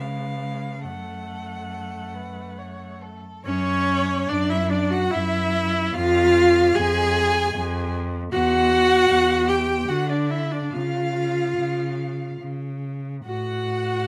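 Elegiac and yearning, this slow romantic movement for string quartet unfolds in F# minor and 3/4 at a rubato 68-78 BPM, cut from a longer piece and spanning about 14.1 seconds. A rich, smooth first violin carries the melody from the background while a distant, warm second violin adds a second line, both bowed with vibrato, as a clear, focused viola sits up front with its accompaniment over a close, rich cello bass. Light reverb frames the harmony as it drifts from C#7 to F#m, through Fm, Emadd9 and Dadd9, to a C# chord before settling on F#m/A at 13.3 seconds.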